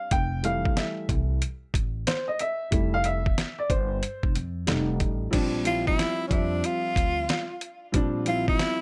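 A light reverb sets a relaxed, cool mood for this cut from a longer jazz-hop piece at 92 BPM with a swung sixteenth feel, where a dark, mellow upright piano with plate reverb sits up front, taking a solo from 0.0 to 5.3 seconds over chords moving from Fmaj7 to F9. A gritty, compressed, pitched-down sampler-style boom bap kit with a thumpy kick and medium-tuned snare joins alongside a woody, growly pizzicato upright bass on steel strings. After the harmony shifts to Bb69 at 5.3 seconds, a clear, close-miked tenor saxophone enters up front at 5.7 seconds with vibrato, a soft attack and scooped notes in a jazz style.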